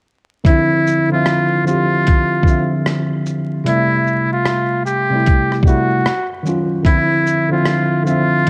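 A muted trumpet with a buzzy, breathy tone carries the melody in a jazz style, scooping into its notes over a narrow range, filtered and run through cassette tape. It sits up front in this hazy, nostalgic lo-fi hip hop excerpt at 75 BPM in D minor, with a swung 16th-note feel. A worn, slightly out-of-tune tine electric piano, lightly overdriven as if through built-in speakers, plays chords moving from Dm9 through Am7/C and Ebm9 back to Dm9, over a compressed, pitched-down boom bap drum kit with a thumpy kick, hi-hat, rim click and shaker, all wrapped in light reverb and vinyl crackle.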